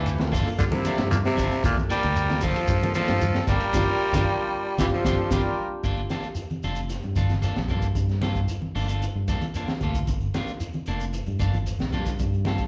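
Afrobeat excerpt at 114 BPM in G dorian, funky and intense, heard as a live gig through a club PA: a raspy, up-front tenor saxophone carries the melody with vibrato and slapback echo, backed by a clear trumpet in the background, a very quiet baritone saxophone and a faint, reedy overdriven electric piano with fast tremolo, all of which drop out between about 5.4 and 5.7 seconds, during a band accent and drum fill. Picked stabs from an electric guitar at the edge of break-up, a round, punchy fingered bass and a crunchy, gritty breakbeat kit with dark cymbals and a high-tuned snare run throughout. Bright, hard-hand congas, a grainy shekere and ringing, meditative handpan arpeggios round out the groove over a Gm9 chord.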